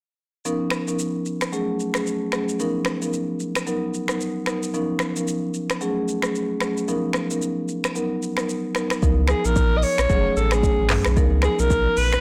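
The recording is blown-out and overdriven, with a light reverb around it. This short afrobeats cut, taken from a longer piece, moves at 112 BPM in 4/4 with swung sixteenths in Db mixolydian, and its mood is joyful and romantic. From 0.5 seconds, an up-front marimba played with medium mallets carries the accompaniment over Db13, Gbmadd9 and Cbmaj7 chords. Alongside it, an electronic, produced afro-pop kit sets out a deep kick, smooth hi-hats, finger snaps, handclaps, rim clicks, shaker and toms, with soft clipping on the snare. At 9.0 seconds a round, sine-like sub bass arrives, and at 9.3 seconds a warm alto saxophone takes the solo melody with pop-style vibrato, a roomy tone and a touch of delay.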